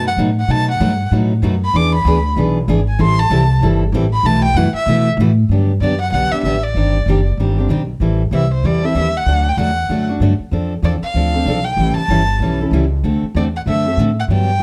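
Acoustic string swing in the jazz manouche style, this lively fragment of a longer piece swings at 191 BPM in 4/4, with a dark, nasal bowed violin taking the lead, its vibrato and portamento set in plate reverb as it solos through the opening 5.5 s, while a full-bodied picked steel-string acoustic guitar with audible finger squeak and a woody, thumpy pizzicato upright bass on gut strings carry the B7–E7–Am7 changes before the tune settles into G major over Gmaj7, Cmadd9 and D7, all in a moderate studio reverb.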